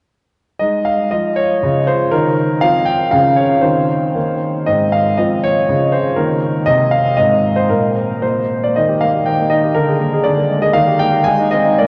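Heard through worn, warbling cassette tape with dulled highs and a long cathedral reverb, this cheerful, playful fragment of a classical-period sonatina features a solo grand piano, clear, smooth and up front with a long sustain, moving with gentle rubato in 2/4 and shifting into a new section at 8.8 seconds.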